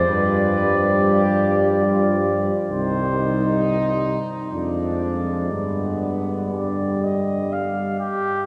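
A slow, rubato 3/4 pulse of around 58-70 BPM carries this melancholic, elegiac hymn-like passage for brass band, cut from a longer piece. A distant, soft-attacked flugelhorn sings the melody over a roomy French horn section on the second line, while a warm euphonium and a background trombone with light vibrato fill in the accompaniment, and an up-front, mellow tuba with a smooth top anchors the bass. The harmony moves from G7 through C minor to a diminished chord before settling on G at 5.5 seconds, and the ensemble sits in a wet cathedral reverb with a long six-second tail.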